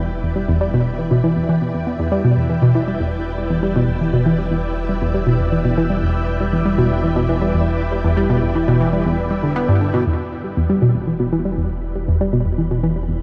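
Cosmic and mysterious, this short excerpt of ambient, sequencer-driven space music moves at 119 BPM in a straight 4/4, resting on an E minor seventh chord. Up front, an analog pluck riff sits low in the register, its round, detuned, wave-folded tone given chorus, a cassette-tape character and delay, while a filter sweep runs over it through both the opening stretch and the later passage from 10.1 seconds. Beneath it, a fat analog bass holds a single low E, and a lush, vintage string machine sustains full-ensemble chords with slow attack and ensemble chorus, fading in across the first 10.1 seconds. At 11.1 seconds an airy, breathy, wind-like tuned noise texture enters far in the background with its own built-in reverb. The dark production is bathed in a huge ambient reverb with a long 7.2-second tail, giving the whole piece a deep, spacious glow.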